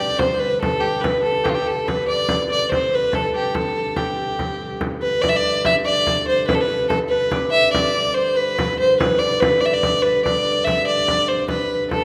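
A fiddle, a concert harp and a pedal harmonium begin together in this rustic, festive medieval dance in a straight 6/8, cut from a longer piece. The bowed fiddle carries the melody up front, one player with a smooth, even tone, light vibrato and a smooth top. Behind it, the fingerpicked harp adds a ringing second line in the background, while the reedy, breathing harmonium holds a mellow drone from a boxy, close-sounding space. A deep, large frame drum enters at 0.2 seconds, its acoustic thump also placed in a small room. The tune moves into a new section at 5.2 seconds and carries on to the cut at 12.0 seconds, all set in a wet recital hall reverb.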